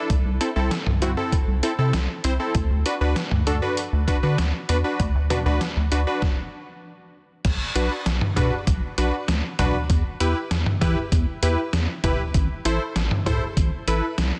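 Synth-pop at 98 BPM in A dorian with a cool, melancholic mood, this short cut from a longer piece sets detuned sawtooth analog keys with chorus over a rubbery, hollow square-wave bass with a resonant filter pluck and a muffled, pitched-down trip hop sampler-style kit with a thumpy kick, cowbell and toms, all three up front in light digital ambience, with a stop at 6.2 seconds before the second section moves through Bm, Em and Am from 7.4 seconds in a dense, heavily limited master.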